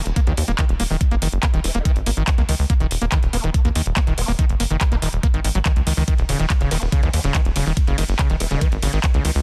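A hypnotic, psychedelic stretch of psychedelic trance in Eb minor, this short cut from a longer piece drives at 142 BPM in a straight 4/4. A knocking electronic kick drum sits up front from 0.2 seconds, alongside a layered garage kit of handclaps, metallic hi-hat and ride cymbal that enters at 0.1 seconds. Underneath, a tight sequencer bass plays from Eb1 to Eb2, its punchy sawtooth and square-wave tone shaped by a filter pluck and moving notch. Over it, an overdriven acid bass carries the riff between Db3 and Bb3, squelchy and gritty with a resonant filter sweep, distortion, sidechain pumping and digital delay. Further back, a nasal vowel-sweep wobble bass built on a sine tone and formant filter adds a second line from 0.0 to 8.7 seconds, thickened by ensemble chorus, sidechain pumping and delay. The dry, dense mix is heavily limited in a modern style.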